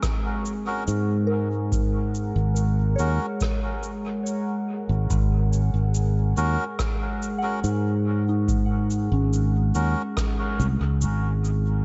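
The rhythm sits at a slow 71 BPM in straight 4/4, anchored by a deep, tape-warm electronic kick that plays until 10.3 seconds, with a natural rim click and cabasa adding small-room ambience and dub echo. This peaceful, hazy ambient dub piece is cut from a longer work and rests on a single Gb/Ab chord throughout. A dark, warbling pad in sawtooth and sine layers with a sub octave holds sustained chords through chorus and its own reverb, roughened by vintage 12-bit sampler grit. Far back in the mix, a pure FM synth bell plays gentle arpeggios through chorus, phaser and dub echo. A reedy, breathy melodica, close-miked and dry at the source, places stabs from 0.7 seconds that ring out through dub echo. A growly, up-front fingered electric bass enters at 0.9 seconds as the loudest part, and the whole sits in light reverb with a dulled top end.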